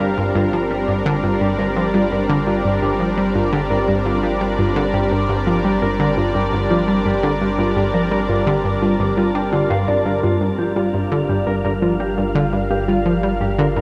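Hypnotic and expansive, this ambient, sequencer-driven space music moves at 85 BPM in a straight 4/4, set in G minor and tuned to A4 = 439 Hz, resting on a single Gm7 chord through a fragment cut from a longer piece. Up front, a lush, thick unison pad built from detuned sawtooth voices holds sustained chords with a slow attack and long release, thickened by chorus, while an analog pluck, round and detuned with a fast, decaying filter attack, carries a low riff through chorus and tape echo. A dark, clean, fingered electric guitar plays arpeggios higher up, trailed by its own tape echo. Beneath them a deep sine sub bass sits on G1, fading in across the full 13.8 seconds. In the background, an airy, breathy wind-like noise layer drifts with its own built-in reverb, and the whole piece sits in a wet concert hall reverb with a 1.9 s decay.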